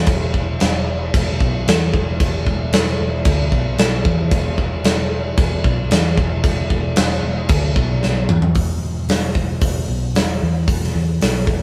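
A big acoustic rock drum kit leads this heavy, driving hard rock excerpt at 113 BPM in a straight 4/4, sitting up front with a mid-forward, rolled-off sound, a tight kick, a medium-tuned snare, crashes, hi-hat and toms. Beneath it, a hollow-body short-scale electric bass, picked and amped, holds the low end between E1 and E2 with a dark, round tone. Recorded as a band playing live in one room with light reverb, the passage turns on a drum fill from 8.0 to 8.6 seconds into a new section that runs to 11.6 seconds.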